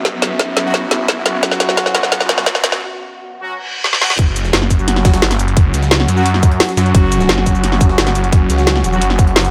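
A swarming, nasal drone of detuned unison tones opens this futuristic, aggressive stretch of dark technical drum and bass, holding sustained chords under built-in reverb and sidechain pumping while a snarling, distorted saw bass growls up front beneath it. A tight electronic kick and a layered kit with a woody snare, metallic hats and shaker drive from the first moment, and a very quiet riser with reverse cymbal and a warbling, lo-fi tape-like pad sit far behind. From 0.7 seconds, a clear classical-style brass section punctuates the mix with stabs carried by digital delay. The opening build-up brings a filter sweep, drum fills and a short break, while the reverse cymbal swells through the break's final moments into the drop at 4.2 seconds. There a gritty, pitched-up jungle sampler-style kit with a high-tuned snare joins very quietly from a large room, thickening the rhythm under the bass, brass and drone. 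The whole piece carries light reverb and digital ambience, and this passage is cut from a longer piece.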